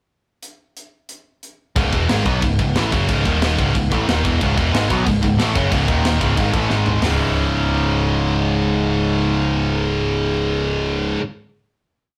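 A growling, overdriven electric bass sits up front in this short, epic and relentless heavy metal piece in C# minor at 182 BPM, driving eighth notes that double the guitar riff. The tight metal drum kit opens alone at 0.4 seconds with a pickup bar, its gritty, saturated sound carrying a tight kick, medium-tuned snare, hi-hat, crash and toms with a rolled-off top. At 1.8 seconds the bass and two distorted, high-gain guitars crash in with a picked power-chord riff. One guitar is heavy and up front, while the other has a scooped tone and sits in the background. A biting, double-tracked overdriven guitar joins the riff at 4.4 seconds, moving mainly between C# minor and D#5. A drum fill over G#5 sets up a final C# minor chord that rings out, with a moderate reverb and a rough rehearsal-room character.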